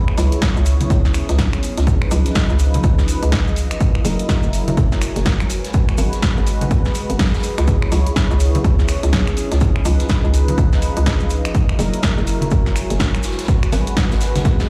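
A smooth, detuned sawtooth pad and a warbling, lo-fi pad in the background open this deep, late-night deep house cut, both sustained and pulsing with sidechain pumping over a loop of C#m7, C#9, F#7 and G#m7. The front pad carries chorus and a touch of vintage 12-bit sampler grit, while the darker, nostalgic one drifts through chorus, phaser and its own reverb. At 0.1 seconds a punchy analog drum machine adds finger snaps, hi-hat and snare, and within the first half second a hollow, bouncy FM bass arrives, joined by very quiet ringing congas, grainy maracas and a distant jazz brush kit heard in its studio room. An up-front, tape-warm analog kick enters at 0.4 seconds to drive the swung groove. Light reverb and small room ambience surround the mix, which sounds as if it were played back on a big sound system in a bare room before the excerpt is cut off at 14.7 seconds.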